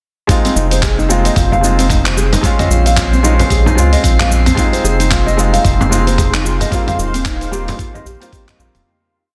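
Earthy and meditative, this short organic downtempo piece in F minor moves at 112 BPM with a swung sixteenth feel, as a felt-muted upright piano plays soft, rootless held chords with syncopated pushes through digital delay and sidechain pumping, while a woody, thumb-plucked nylon-string guitar loops a 10-step arpeggio that drifts against the bar over Fm7, Bbm7 and Eb69. A gritty, sampler-style soul kit of shaker, hat, low tom and handclaps, re-recorded in a large room, sits over a thumpy electronic kick, a round, deep analog bass line in dub style and a background frame drum played with soft hands. A glassy, chorused harmonics texture holds a high note from 1.0 seconds, a blurred granular cloud pad joins at 5.4 seconds, and the dense, heavily limited piece fades out from 6.0 seconds.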